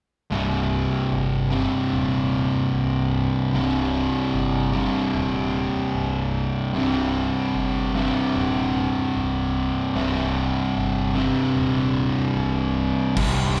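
This stoner and doom metal excerpt, cut from a longer piece, carries a hypnotic, heavy mood in a straight four-beat pulse and rests on a single C minor chord. From 0.3 seconds a fuzz guitar, double-tracked and up front, plays a low riff, its fuzzy distortion carrying a slapback echo. Beneath it a growling picked electric bass, direct and amped with a gritty overdrive, holds down the deep end at a lower level. Just at 13.2 seconds a crunchy, dark overdriven guitar, also double-tracked, enters on a riff reaching higher, joined by a big acoustic rock drum kit with a punchy kick, bright crash and hi-hat, and a large-room sound. The whole thing is heard as a live gig through the venue's PA, with small room ambience and recital hall reverb around it.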